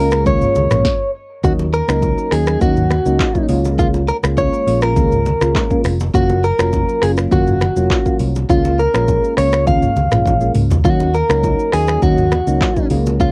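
A straight 4/4 afrobeats groove at 102 BPM drives this short, joyful and romantic excerpt cut from a longer piece, with the afro-pop drum kit up front: a deep kick, sharp snare, metallic hi-hat, rim clicks, toms, shaker, finger snaps and handclaps, all carrying a tape-worn cassette tint. After a brief stop from 0.8 to 1.4 seconds the groove settles in, and a drum fill at 10.3 seconds leads back to the Ebm7 chord. A fingered electric bass sits low with a dark, round, amped tone, while soft electric-piano-like synth keys fill the middle with mellow, sine-like chords colored by chorus and phaser, moving through Db6, Ebm7 and Gbmaj7. The melody comes from a bright, clean electric guitar, recorded direct, picked and compressed with a scooped tone, given cassette character and tape echo as it sings in the upper register. Congas and bongos add very quiet, hard-handed acoustic accents from a small room, and the whole mix carries a light reverb and the homespun feel of a cassette recording.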